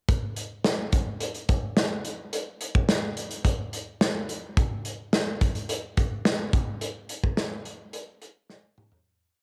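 Uplifting and glossy, this short pop piece moves at 107 BPM in a straight 4/4 feel, built entirely on a modern studio drum kit that plays from 0.1 to 9.0 seconds. The acoustic kit sits up front with a big backbeat, its medium-tuned snare and tight kick joined by hi-hat and toms in a small, pumping room sound. A cassette tape character colours the drums, and the whole home recording on cassette carries a moderate spring reverb. The single verse begins to fade out at 6.8 seconds, and a drum fill rounds off the final moments from 8.5 seconds.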